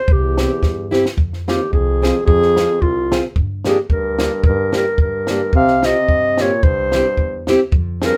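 A classical-style clarinet leads this bouncy, jolly alpine folk dance-band excerpt up front in a swung 2/4. It is joined at once by a smooth-topped euphonium second line, a woody, thumpy gut-string pizzicato upright bass, and a dry, punchy compact cocktail drum kit with a high-tuned snare that plays a fill from 0.6 to 1.2 s. From 0.4 s a fingerpicked plugged-in steel-string acoustic guitar adds concert-style accompaniment over C, F minor, G minor and Csus4 before settling back on C, all set in a light reverb.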